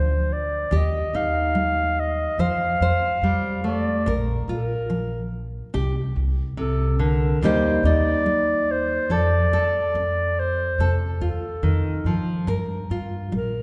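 From the first moment, a mellow, smooth-topped clarinet sings a classical-style solo melody over fingerpicked, full-bodied nylon-string guitar with audible finger squeaks and woody, steel-strung pizzicato upright bass, all three up front in this intimate, heartfelt acoustic folk-pop ballad at 71 BPM in 4/4, tuned to A4 = 441 Hz, its chords moving from Bb through Eb, Fadd9 and C5 to Gm7 inside a wet concert-hall reverb with a softened top end, in a passage cut from a longer piece.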